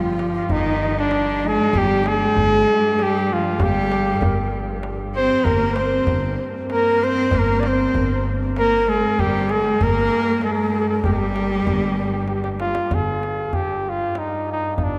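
In a straight 3/4 at 97 BPM, this melancholic, longing Persian modal ensemble piece in G dastgah shur features a clear, soft-attacked solo flugelhorn up front; a very quiet, breathy end-blown ney with vibrato and a focused, bowed cello carry second lines until 12.6 s, while a dark, woody pizzicato upright bass, a bowed double bass drone in the background and a deep, dry tombak fill out the ensemble, with a drum fill at 12.3 s, heard in a vast, echoing cathedral.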